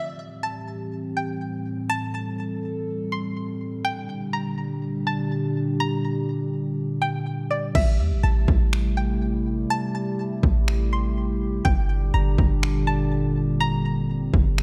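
Dark, warm production steeped in concert-hall reverb carries this hazy, ethereal cloud-rap excerpt at 123 BPM in a half-time feel, as a twangy, string-like resonator pluck with chorus and digital delay floats above a deep, sidechain-pumped analog pad of sawtooth and square tones on Am7 and Gm, until at 7.8 seconds a boomy sine 808 bass and an up-front trap kit of hard-clipped kick, finger snaps and crash cymbal join in.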